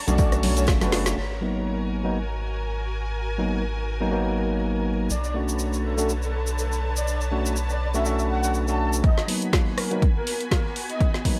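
Vinyl crackle and a light small-room reverb frame this smooth, deep house excerpt cut from a longer piece. A lush, distant string section and gritty, overdriven tine electric piano stabs, both pumping with the sidechain, sit over a rubbery square bass, a punchy up-front electronic kick, a house kit with a woody snare and dark hats, soft-handed congas, a grainy tube shaker and a very quiet gated 80s kit. A breathy, flute-like synth lead with chorus and dub echo returns at 5.1 s alongside a silky analog string pad, and the bass drops out at 9.0 s as the kick and house kit come back for a build-up.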